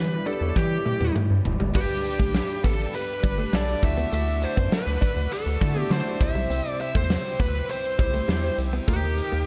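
1980s-style pop in G major at 101 BPM, this nostalgic, uplifting excerpt sets a dark, up-front overdriven lead guitar melody over clear concert grand piano, a smooth chorused analog pad, a rubbery square bass and a direct-recorded clean guitar riff with lush chorus, while a huge arena drum kit with a fat snare and punchy kick plays a fill from 0.6 to 1.8 seconds and a very quiet high-gain distorted guitar joins at 1.7 seconds, moving from Em7 through G, Dadd9 and C to a closing Eb.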